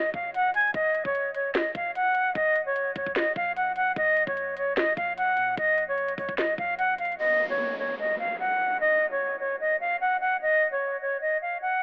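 Menacing and eerie, this half-time trap cut at 149 BPM in Bb minor sets an airy, vibrato-laden concert flute up front, tongued and distant-sounding, carrying the melody over a crisp, knocking electronic drum kit with a sharp snare and vintage 12-bit sampler grit, while a deep, boomy sine 808 bass sits dark in the background. The drums and bass drop out at 7.2 seconds, and an electronic downlifter joins the flute until 10.4 seconds; the flute then carries on until the fragment ends at 11.8 seconds. The whole mix carries a thin telephone-like tone with light reverb.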